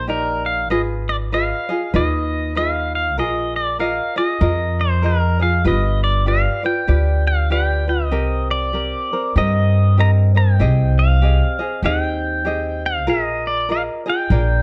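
A lightly swung 4/4 at 97 BPM carries this sunny, relaxed Hawaiian passage, cut from a longer piece and running 14.6 seconds over chords moving from Ebmaj7 through G7 and Cm7 to Bb7sus4. Up front, a clean, compressed electric pedal steel guitar sings the melody with fingerpicks, slide and volume swells, while a bright, light tenor ukulele fingerpicks the accompaniment. A pizzicato upright bass with steel strings sits prominently underneath, woody and thumpy, all set in a dark, warm production with light reverb and a small-room ambience.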